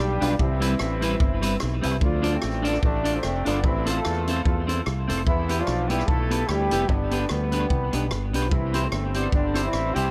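Energetic and mischievous, this ska excerpt moves at 148 BPM in 4/4 with a light swing on the eighth notes, set in D dorian and cut from a longer piece. A tight, up-front horn section carries the melody with light vibrato, octave doubling and a smooth top, its lines trailed by dub echo. Beneath it, a fingered electric bass sits dark, round and direct in the low register, while a clean, picked electric guitar adds dark-toned accompaniment that also carries dub echo. A swinging big-band drum kit enters at 0.2 seconds with hi-hat, rim click and a punchy kick in a natural studio room sound, likewise touched by dub echo. After a brief opening section, a new section begins at 2.0 seconds, and the harmony moves from Dm through Am, Em and G before landing on C, all within a moderate studio ambience.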